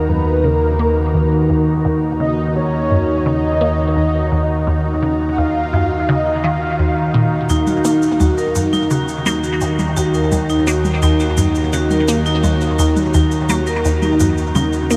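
Cosmic and expansive, this sequencer-driven ambient space music excerpt in Eb minor moves at 85 BPM in a vast, echoing space, where a bright, morphing wavetable pad and an Eb2 analog drone hold the Ebm chord beneath a juicy, squelchy blip pluck riff, while a breathy, flute-like synth lead sings its melody until 7.5 seconds, when a metallic vibraphone with hard mallets takes up ringing arpeggios alongside tape-echoed electronic shaker and toms.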